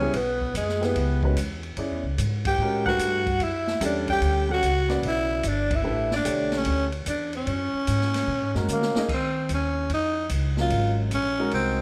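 A swung 4/4 pulse at 148 BPM drives this intense, cool modal jazz fragment, cut from a longer piece. The growling tenor saxophone carries the melody up front with a raspy, gritty edge and light vibrato. A growling alto saxophone plays a second line in the background, its subtone voice marked by scooped notes until it stops at 8.7 seconds. A clear upright piano accompanies with a polished, intimate touch, long sustain and audible action noise, while a woody pizzicato upright bass on steel strings sits up front with a growly weight. The open jazz drum kit, heard in a small room, brings dark cymbals, a medium-tuned snare and a boomy kick with a rolled-off top. The band hits two accents together, and a drum fill leads into a new section at 9.1 seconds as the harmony moves through suspended ninth chords and an altered seventh under light reverb.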